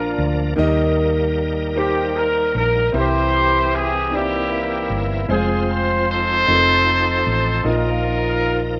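Jubilant, soulful gospel in 6/8 at 51 BPM in Eb major, cut from a longer piece, where a mellow, up-front horn section with soft attack and light vibrato carries the melody over an intimate grand piano with audible action noise, a bright, shouting tonewheel organ holding sustained chords through overdrive, chorus vibrato and a slow rotary speaker, and a dark, round hollow-body bass, all four entering together at the start of a rough home demo mix moving from Bb through Eb, C7, Fm and F7 to a closing Bbsus4.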